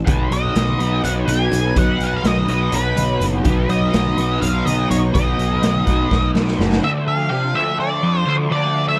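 A dark, fuzz-soaked lead guitar with slapback echo carries the melody from 0.3 seconds in this trippy psychedelic rock excerpt, riding an uneven 7/8 pulse with a straight feel. Beneath it, a double-tracked garage guitar drives an overdriven riff through a flanger, while a round, fuzzy picked bass sits up front alongside it. A gritty, saturated drum kit with a boomy kick and a rolled-off top pumps in a small room, joined by very quiet, low-tuned congas with thick skins and a band-limited, vintage tone. A swirling, bright string machine with ensemble chorus and phaser holds slow-attack chords far back in the mix. A drum fill from 6.1 seconds leads into a new section at 6.8 seconds, where bass, drums and congas drop away and the guitars and string machine carry on over a D minor chord, all with very little reverb.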